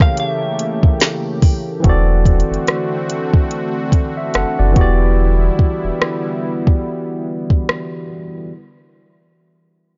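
A slow 72 BPM groove in 4/4 with a swung sixteenth-note feel sets up this late-night, sensual stretch of contemporary R&B in E minor, cut from a longer piece. The electronic drum kit sits up front with a soft kick, woody snare, rim click and metallic hi-hats, carrying a tape-warm sheen until 7.9 seconds. A barky tine electric piano, bright and clean through a combo amp, plays accompaniment throughout, while a detuned sawtooth analog pad holds smooth sustained chords colored by chorus and tremolo. A clean, compressed electric guitar recorded direct picks a brief melody only in the opening moments, and at 1.8 seconds a round, deep analog bass with a fast attack enters up front, staying until 5.9 seconds. The harmony moves from A7b9 to D7/E and settles on Em7, all captured in a dry, gritty hardware recording with little reverb and a rolled-off top end.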